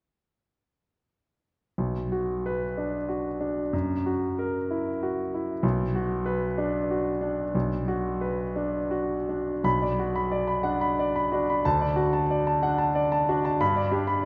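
In a rubato 6/8 lilt, this passionate, stormy romantic character piece for solo piano unfolds as a brief extract from a longer work, entering at 1.8 seconds and closing at 14.3 seconds. The concert grand sounds clear, smooth and vintage, with a deep bass and an up-front presence, spanning a broad range across the keyboard. A wet concert hall reverb surrounds the playing, and a new section begins at 9.7 seconds as the harmony turns from its opening minor-key chords toward brighter major ones.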